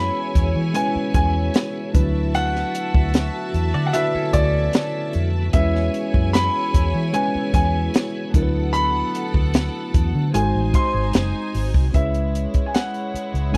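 Lush 1970s-style soul with a smooth, romantic mood, where a concert grand piano with slapback echo carries the melody over a soft-attack, floating string section, a worn, slightly out-of-tune tine electric piano, a piping tonewheel organ with fast rotary speaker and light overdrive that drops out at 11.9 seconds, a dark, round, foam-muted fingered bass and a dry compact cocktail kit with a high-tuned snare and punchy kick entering at 0.4 seconds, while a twangy, direct-recorded clean electric guitar with analog chorus briefly slips in a background riff from 3.7 to 5.3 seconds, all captured in a close, dry studio sound.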